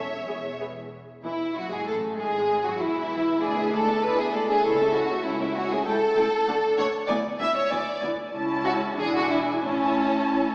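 Quick classical-period movement for string orchestra in A major and 2/4, moving at 88-100 BPM with a graceful, lively rubato feel, cut from a longer piece. A violin section sings the melody with a soft attack and expressive vibrato, while a second violin line sits up front, smooth and even, over an expressive viola accompaniment touched with portamento. A rich cello section and a woody double bass section hold the bass in the background, all heard from further back in a reverberant scoring stage through a small-speaker sound as the harmony turns through A/C#, E7 and home to A at 9.6 seconds.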